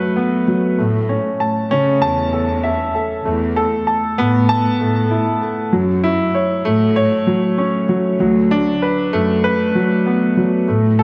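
A worn, up-front baby grand piano opens this luminous, tender piano-and-strings electronica fragment at 97 BPM with a long-sustaining, delay-touched riff, joined at 0.8 s by a dark, lush bowed cello section carrying the bass line with expressive vibrato and portamento, as the harmony moves from D6 through A, Esus4 and F#m7 back to D6 inside a moderate echo-chamber reverb.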